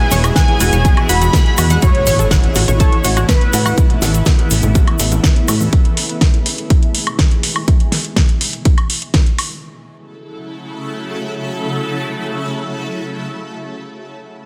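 This excerpt of emotional, driving progressive house at 123 BPM in F# minor opens straight into a drop, with a thick, bold unison lead carrying the melody over a soft, pure synth bell, a shimmering ambient pad and brief, mellow supersaw stabs with dub echo sitting in the background. A pop drum kit with a fat snare, metallic hats and woodblock, very quiet congas and bongos, and a grainy egg shaker are there from the start, and a punchy, up-front electronic kick arrives at 0.4 seconds. Underneath, a plucky analog bass with tube saturation drives the low end, while a round, chorused analog pluck spins arpeggios with dub echo, and sidechain pumping makes the bass, pluck, stabs, pad and hats breathe with the beat. After a band accent, a faint impact lands at 1.8 seconds as the harmony moves from E to Aadd9 and a filter sweep moves across the ethereal, granular pad with its phaser and built-in reverb. 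The bass, percussion and lead fall away by 5.7 seconds, leaving the drums and pad, and the pad carries on alone through an F#m7 chord until 13.7 seconds. The master is dense and heavily limited with a light reverb.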